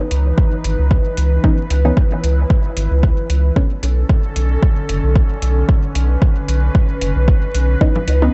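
A breathy, warbling pad with chorus opens this meditative, cavernous dub techno excerpt at 113 BPM in C# phrygian. It is joined almost at once by a round, nasal analog bass with tube saturation, an overdriven deep kick and metallic hats, with the pad and bass pumping on a lightly swung 16th feel. A muted sawtooth chord stab, treated with phaser and dub echo, appears from 1.4 s to 3.7 s and returns at 7.8 s as the chords move from C#m9 to Bm9 and back, while a barely audible bubbling filter texture and layered electronic congas and toms slip in only at the very end, all within a dry, gritty sound with vinyl crackle and a dull, rolled-off top.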